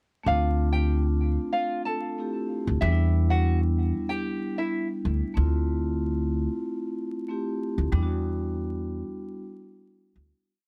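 Gritty and moody, this short boom-bap hip-hop piece in D dorian rides a swung 94 BPM groove in 4/4, built entirely as a looping hook that begins at 0.3 seconds. An up-front pizzicato upright bass carries a deep looped line with a woody, thumpy tone, sitting as the most present voice in the mix. Soft-mallet vibraphone, motor off, repeats held rootless chords with grace notes like a sampled loop, its ringing, mellow sound filtered at both ends. A small, fingerpicked nylon-string guitar plays a short looping melody doubled in octaves, also filtered, and drops out at 4.9 seconds. The harmony alternates between Dm7 and Em7, while light reverb and a bed of vinyl crackle give the whole piece a dusty grain before it fades out from 7.9 seconds.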